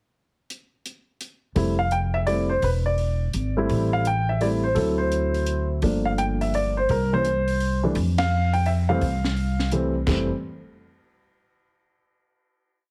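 Relaxed and swinging, this short jazz piano trio piece moves at 169 BPM in 3/4 in F major, opening with a pickup bar from a compact cocktail drum kit keeping time on the hi-hat with sticks, its high-tuned snare and punchy kick softened by a rolled-off top. At 1.6 seconds a dark, mellow grand piano enters with song-like motifs, syncopated comping and rootless voicings bathed in plate reverb, while a woody, thumpy upright bass on gut strings plays a pizzicato two-feel line through changes from Fmaj9 to Gm9 and C7 before settling on Fsus2. A band accent lands at 8.1 seconds ahead of the closing chord, and the whole mix carries a heavily compressed, radio-like sound with light reverb.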